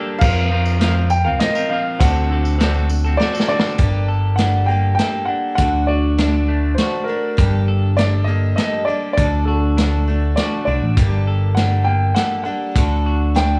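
A warm concert grand piano carries the melody in this wistful, dusty folk and heartland rock excerpt at 100 BPM in 3/4, joined by a picked electric bass, a vintage drum kit with dark cymbals and a punchy kick, and a faint, jingly tambourine that drops out at 3.7 s along with a woody, very quiet upright piano. A shimmering, octave-doubled twelve-string acoustic guitar is picked beneath a bright, twangy electric guitar riff at the edge of break-up. After a drum fill, the music settles at 3.8 s into G harmonic minor, swaying between Gmadd9 and D, all colored by small room ambience and the warbly pitch drift of worn cassette tape.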